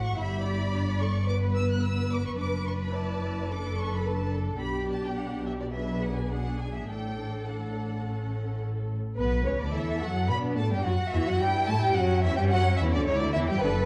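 A quick classical-period movement for string orchestra, graceful and spirited, moving at 108 BPM in a straight 4/4 in D major, tuned to A4 = 435 Hz and cut from a longer piece. The violin section carries the melody from B3 up to F#6 with smooth, even vibrato, while a second violin line sits up front with a soft attack and an expressive, lush tone. A focused, close-sounding viola section fills in the accompaniment, and the cellos and a rich, up-front double bass section share the bass, the basses reaching down to F#1. The harmony moves from G through D/F# and Bm6 to a cadence on A at 8.0 seconds, before a shorter second section opens on D at 9.2 seconds and turns toward C#dim. A moderate scoring-stage reverb and a dark, warm production give the ensemble a plush, bowed glow.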